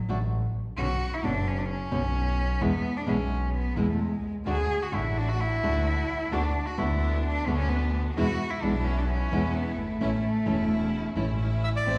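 A rich, nasal cello takes a solo from the start, its bowed sul tasto line soft in attack and airy with light vibrato, carrying a dramatic, melancholic tango in A major at 130 BPM with a rubato feel. A gut-string double bass and a fingerpicked classical nylon-string guitar support it through a progression moving from D/A through Bmadd9 and E to A, while a clear, focused chamber string section adds bowed stabs from 4.5 seconds. A reedy, close-miked bandoneon enters at 11.6 seconds just as this fragment of a longer piece ends, all set in the reverb of a recital hall heard from further back.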